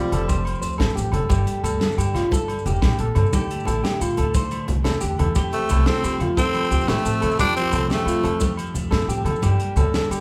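Sunny and danceable, this highlife guitar band excerpt moves at 118 BPM in a straight 12/8 feel, set in F major over chords that shift from Fadd9 to Gmadd9 and Dsus2 before returning. A raspy, growling tenor saxophone carries the melody up front with light vibrato, paired with a breathy, very quiet alto saxophone playing a subtone second line; both horns sound briefly at the opening and return together from 5.5 to 8.6 seconds. Underneath, a picked electric guitar at the edge of break-up spins compressed arpeggios while a clean electric guitar supplies accompaniment in the background. A woody, thumpy upright bass on gut strings plays pizzicato throughout, joined by a tight funk drum kit with a high-tuned snare and tight kick on hi-hat, kick and snare. Ringing congas, vintage-sounding agogo bells and grainy maracas sit in the background, and the whole band plays live in one large studio room with moderate reverb.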